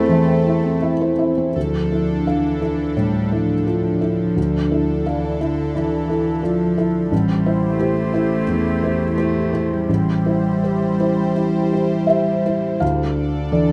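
A felt-muted upright piano sits up front in this reflective, longing neoclassical fragment in D minor, its dark, mellow tone carrying audible action noise as it accompanies at a rubato 80-89 BPM in 4/4. A single bowed cello adds a second line in an intimate sul tasto voice with light vibrato, soft attack and tape echo, stopping at 12.6 seconds, while a quieter, detuned sawtooth analog pad holds swirling, evolving chords through phaser and chorus. The close, detailed recording keeps reverb minimal as the harmony moves from Am/E through Dmadd9 and Am7 before returning to Dmadd9.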